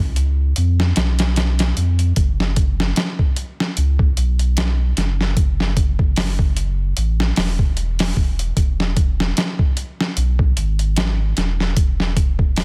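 A swung sixteenth-note groove in four sets a melancholic, hypnotic trip hop mood in this short cut from a longer piece. A deep, round sine sub bass with tube saturation opens at 0.0 seconds, and at 0.2 seconds a gritty, pitched-down boom bap sampler-style kit joins with thumpy kick, medium-tuned snare and hi-hat, compressed, tape-warm and touched with studio reverb. Both parts sit up front in a dry room sound and a dense, heavily limited modern master.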